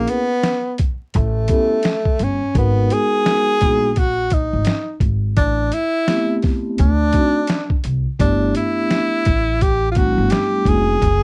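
A dry, close 1970s-style studio sound with vinyl crackle frames this smooth jazz-hop excerpt at 85 BPM in swung 4/4, where a clear, present tenor saxophone plays an up-front solo melody with subtone and vibrato over ringing, mellow soft-mallet vibraphone with slow motor vibrato, woody pizzicato upright bass, and a gritty, compressed, pitched-down boom bap sampler-style drum kit with a thumpy kick and medium-tuned snare, all moving through chords from A#m7b5 to G69.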